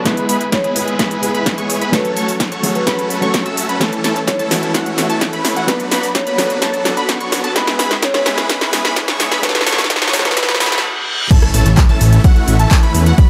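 A straight 4/4 pulse at 128 BPM drives this anthemic, triumphant festival progressive house passage in A major, where a punchy, layered electronic kick and an up-front big-room kit of snare, crisp hi-hat, handclaps, rim click, ride and crash push a build-up beneath a huge, euphoric detuned supersaw riff under a sweeping low-pass filter, a bright, catchy plucky arpeggio lead with lush chorus, a background concert grand piano with short sustain and a mellow, ringing soft-mallet vibraphone melody with delay, the synths and piano sidechain-pumped, before a very quiet riser and reverse cymbal lead into a stop at 10.8 s and the drop at 11.3 s, where an impact lands and a fat, thick analog bass enters up front at 11.5 s, all in a moderate room reverb.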